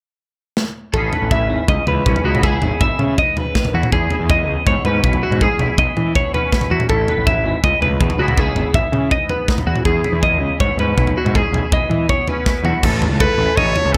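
A clean, compressed twelve-string electric guitar spins arpeggios with a warbly pitch drift over a scooped, chorused twangy electric guitar, a growly overdriven fuzz bass and a tight-kicked, up-front acoustic drum kit whose fills at 0.6 and 12.5 seconds frame this intricate, bright math rock and midwest emo passage cut from a longer piece, before a punchy solo trumpet with light vibrato enters at 13.2 seconds over an A chord in a dry, close-sounding room.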